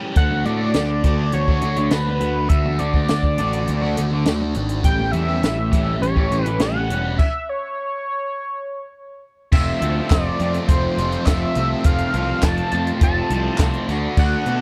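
A straight 4/4 pulse at 103 BPM drives this wistful yet upbeat indie rock excerpt, where a punchy, up-front compact cocktail drum kit with dark cymbals and a high-tuned snare joins a round, fuzz-soaked picked electric bass, a compressed overdriven electric guitar riff with phaser, a bright fuzz guitar riff tucked in the background, and a bold, retro octave-doubled sawtooth lead with chorus, tape echo and vibrato, all in a dry, close 1970s-style studio sound, until a stop at 7.2 seconds gives way to a very quiet, flute-like tonewheel organ entering at 9.5 seconds and hollow, vintage group handclaps from 10.1 seconds as the chords move from D6 through A7 and Fmaj7 back to D6.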